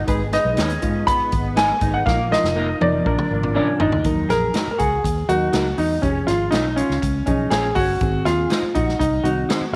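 Urgent and driving, this uptempo 1960s-style soul excerpt moves at 121 BPM in a straight 4/4, settling into Eb minor from 4.0 seconds after a drum fill on a swinging big-band kit with a punchy kick and medium-tuned snare. An up-front grand piano carries the melody over a reedy, slightly out-of-tune electric piano and a dark, foam-muted fingered bass, while two picked electric guitars through a small old amp, one playing a lush-chorused riff and the other lo-fi stabs, add a slightly broken-up edge. A smooth tonewheel organ with key click and slow rotary speaker holds background chords only until 4.0 seconds, all set in light reverb and small room ambience.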